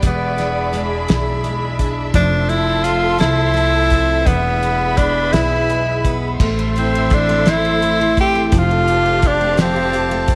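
An aching, dramatic pop ballad in six-eight opens with picked, full-bodied steel-string acoustic guitar, woody pizzicato upright bass, a dry, damped 70s drum kit with a fat snare, tight kick and dark cymbals, and a distant studio string section holding soft-attack chords with vibrato and portamento. Almost at once a breathy, up-front tenor saxophone takes the solo melody with scooped notes. The harmony leans on E7, Fmaj7 and E before turning to Am and Fadd9 at 6.4 seconds, all in a light small-room ambience in this excerpt from a longer piece.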